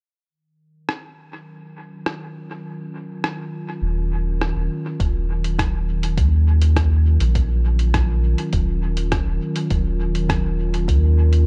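Ambient dub with a deep, meditative mood, cut from a longer piece, opens as a muffled, pitched-down sampler-style kit ticks out hi-hat and rim clicks steeped in dub echo, soon joined by a warbling, nostalgic pad of detuned, chorused sustained chords that carries a filter sweep up to the five-second mark. A round, soft sub bass enters up front at 3.8 seconds, and an overdriven electronic kick joins at 5.0 seconds, giving the second section its deep, roomy thump. The production is dark and digital, with the pad's long release and built-in reverb hanging over the groove.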